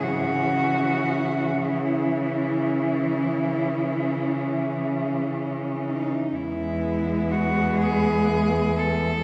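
Melancholic and elegiac, this short excerpt from a longer classical piece for cello ensemble unfolds slowly in C# minor, with a rubato 12/8 pulse hovering around 36-43 BPM. Four bowed cellos, each a single player, sound together throughout the 9.2 seconds: an intense, rich lead carries the melody up front with vibrato and a smooth top, while a soft-attacked second line sits distant and very quiet beneath it, gliding expressively with portamento. A third cello supplies the accompaniment with its own sonorous vibrato and expressive slides, and a clear, even bass anchors the texture from below. The harmony rests on C# minor before shifting to E at 6.4 seconds, where the opening section gives way to a second. A wet church reverb with a long tail surrounds the ensemble, lending the lament a spacious, resonant glow.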